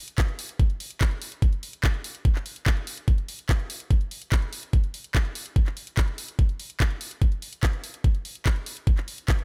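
A straight 4/4 pulse drives this intense, psychedelic trance excerpt, with an up-front, knocking electronic kick entering at 0.2 seconds alongside a layered, produced drum and bass kit of handclaps and hi-hat, both set in studio reverb within a digital ambience.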